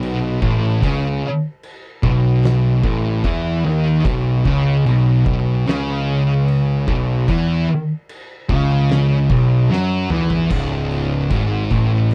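Brooding and ominous, this short cut from a longer stoner and doom metal piece moves at a slow 74 BPM in a straight 4/4 feel. Two thick fuzz guitars carry the riff throughout, one dark and distorted sitting up front while a second, very quiet fuzz guitar sits beneath it. A fuzz picked electric bass adds a growly, overdriven edge in the low register, and an oversized low-tuned drum kit supplies a punchy kick, fat snare, toms and dark crash cymbals with a saturated, gritty character. The harmony moves from A5 to B5 at 4.1 seconds, and after a drum fill the music shifts into a new section on C#5 at 10.5 seconds. The sound is a dry, close 1970s-style studio recording with light reverb.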